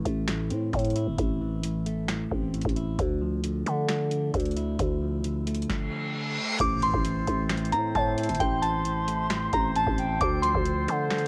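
Hip hop in a trap vein, this melancholic, eerie excerpt from a longer piece moves at 133 BPM with a half-time feel in A minor. A clean, compressed electric guitar and an up-front, growling, buzzy 808-style bass play alongside a booming analog drum machine with its deep kick, crisp snare, metallic hats, finger snaps and crash, all overdriven and tape-worn. A reverse cymbal rises at 5.8 seconds into an impact at 6.6 seconds, where a crystalline, warbling FM synth bell takes the melody over distant, roomy woodwind chords, and from 8.4 seconds an airy, hollow concert flute adds a second line with analog delay, all wrapped in home-cassette ambience.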